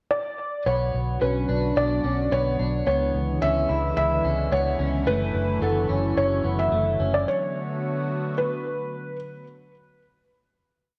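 Wrapped in worn, warbling cassette tape and a moderate stage reverb, this short, melancholic and ethereal dream pop piece opens with a soft, felt-muted upright piano singing a motif-based melody through tape echo, joined at 0.7 seconds by a swirling, detuned sawtooth pad under phaser and chorus, a slightly broken-up picked guitar ostinato steeped in lush chorus and echo, and a dark, round, foam-muted bass playing steady eighth notes until 7.2 seconds.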